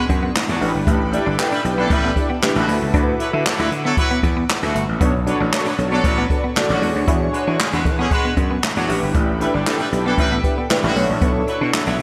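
This funky, slick early-eighties boogie funk excerpt at 116 BPM features a growly, overdriven slap bass alongside a boomy, brushed jazz kit with handclaps and gated reverb, mellow detuned synth brass with chorus and phaser entering at 0.6 seconds, a dark, slightly broken-up guitar riff in the background, a shimmering pulse-width pad, and a distant horn section with light vibrato, all moving through chords like E13, A9sus4 and Bm9 in a bright digital production with lush hall reverb.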